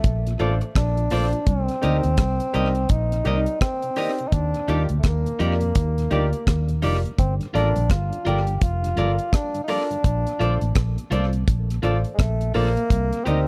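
This bittersweet, smooth lovers rock reggae excerpt opens with a solo bassoon carrying the melody over bass and drums from the first instant. The bassoon has a soft attack, light vibrato and a classical manner, its line trailed by tape echo. Underneath, a dark, round, foam-muted fingered electric bass sits up front beside a dry acoustic drum kit with a tight kick, hi-hat and rim clicks, the kit also touched by tape echo, over a lightly swung sixteenth-note feel. A moment later a very quiet, lightly overdriven tonewheel organ with chorus vibrato and a slow rotary speaker slips in, and at 0.4 seconds an intimate grand piano with audible action noise and long sustain arrives alongside a slightly broken-up, compressed electric guitar playing picked stabs. The harmony moves through Bbmaj7, Cm7, Ebmaj7 and Gm7 before circling back, and the close, small-room 1970s-style sound gives the groove a snug, vintage character.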